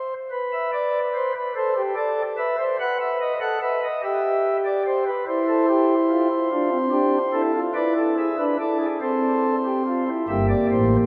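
A pipe organ on soft, warm flute stops carries this short baroque-style fugue alone, its four voices set up front with a romantic voicing that spans from deep bass tones up to the higher register. The mood is serious and driving, the steady compound metre pushing the counterpoint forward through a minor-key progression that comes to rest on a half-diminished chord near 10.3 seconds. A long, wet cathedral reverb surrounds the instrument, and the passage is cut from a longer piece, ending at 11.1 seconds.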